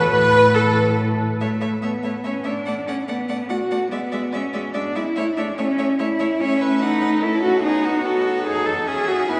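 Spirited and graceful, this brief passage is cut from a quick classical-period movement for string quartet, moving in triple metre with a straight feel. The first violin carries the melody with a clear, focused bowed tone and vibrato, while the second violin sings a supporting line beneath it. The viola, also bowed with vibrato, fills in the accompaniment, and the cello anchors the bass with a rich, smooth sound that sits up front in the balance. All four players sound from the start through to 9.4 seconds. The harmony opens on an Asus2 chord before a new section arrives at 1.4 seconds, passing through B7 toward a closing C#m. A long, wet cathedral reverb surrounds the ensemble, giving it the spacious resonance of a church or concert hall.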